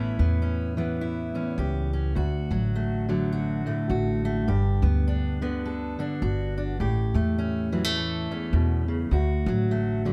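A fingerpicked steel-string acoustic guitar, full-bodied and up front, opens together with a woody, thumpy pizzicato upright bass in this hopeful acoustic folk excerpt in D major at 104 BPM with a gentle swing, moving from Aadd9 through D, G and A7 back to D under light reverb.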